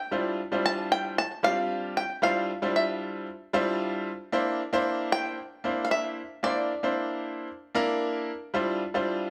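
A late-night, funky mood runs through this short funk excerpt, cut from a longer piece, moving at 114 BPM in 4/4 with a straight feel in D minor. A bluegrass banjo carries the melody from the start, played with fingerpicks and sounding twangy and percussive, its line sitting between D5 and A5 with a slapback echo trailing each note. A bright concert grand piano supplies the accompaniment from 0.1 seconds, its worn, brilliant tone reaching down to deep bass in a range from G3 to C5. Both parts sit up front, and the harmony moves from Dm11 to C9 at 4.3 seconds before returning to Dm11 at 8.5 seconds. The banjo stops at 8.0 seconds, leaving the piano to ring on alone until 9.3 seconds in a moderate large studio reverb.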